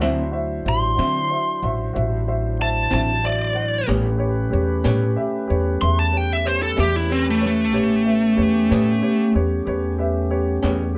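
A slow, straight 12/8 blues at 62 BPM in A mixolydian, swaggering and soulful, cut from a longer piece and moving from D9 to A9 at 3.9 seconds. A woody, growly upright bass sits up front alongside a dark, worn grand piano with audible action noise, a clean tonewheel organ holding sustained chords through a slow rotary speaker, and a slightly broken-up electric guitar through a small old amp with tremolo. Over them a smooth overdriven lead guitar carries the solo melody from 0.7 to 9.3 seconds, set in a light reverb.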